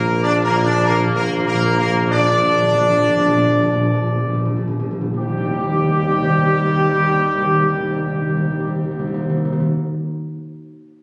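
Classical brass fanfare, triumphant and regal, cut from a longer piece: a clear, distant trumpet section carries the melody over sustained chords from a faint, dark French horn section and a mellow, tight trombone section placed up front, with a smooth-topped tuba on the bass line. Timpani struck with hard mallets on calf heads play an articulate fill through the opening while the tempo slows, and the harmony moves from Bb to Eb at 5.1 seconds, the timpani sounding on until 9.7 seconds. The sound is steeped in wet stage reverb yet captured on a phone in a compressed room carrying club ambience.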